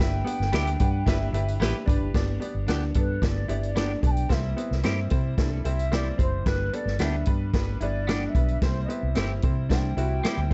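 A bansuri melody, piano accompaniment, round foam-muted bass and a punchy vintage drum kit open this danceable, uptempo 1960s-style soul excerpt in G major at 111 BPM, with a dark hollow-body jazz guitar riff tucked in the background from 0.2 seconds and twangy, phaser-tinged clean guitar stabs from 0.5 seconds. A smooth horn section adds a brief second line from 1.1 to 2.1 seconds, and from 2.1 seconds the distant, mellow bansuri takes a solo with vibrato over chords moving between G and C. The worn, slightly detuned upright piano brings audible action noise and a woody sparkle to a dark production with little reverb overall, where the bass and drums sit up front.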